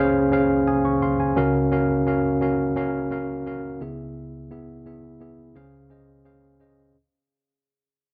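A dry, close 1970s-style studio sound frames this brief, uplifting and nostalgic pop excerpt at 86 BPM in Db major, where a worn, slightly out-of-tune tine electric piano plays alone up front, lightly overdriven through built-in speakers, adding a fill from 0.3 to 1.4 seconds as it moves from Dbmaj7 through Gbmaj7/Db and E/Db back to Dbmaj7 while the whole passage fades out.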